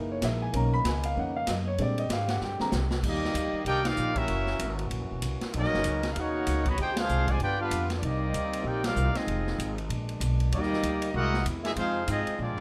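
Set in light reverb, this brassy, energetic big band swing excerpt opens with a polished upright piano over dark, thumpy pizzicato upright bass, a very quiet trombone section holding sustained chords and a distant, roomy drum kit with a boomy kick, until a drum fill leads to 3.0 seconds, where a clear, close-miked trombone section adds a second line and, a moment later, a warm trumpet section with vibrato takes the melody up front, with band accents punctuating the swinging groove through rich jazz chords such as Gb13, Bmaj9 and Bb7b9.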